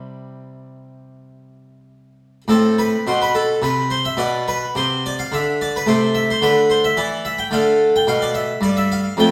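A solo harpsichord of the Italian type, strung with three sets of strings, carries this short passage cut from a longer baroque-style suite movement, its plucked tone full, brilliant and airy. The mood is serene and radiant, with a lilting 12/8 metre played with gentle rubato. The instrument spans from low F2 up to G5 and sits up front, although the listener seems placed further back in a stone room whose reverb lends a soft halo to each note. The phrase opens on C, settles into A minor at 2.5 seconds, passes through Dm13/B and Am/C, and comes to rest on an open D5 at 7.5 seconds. Two statements of the same opening material fill the 9.3 seconds, giving the fragment a calm, poised character.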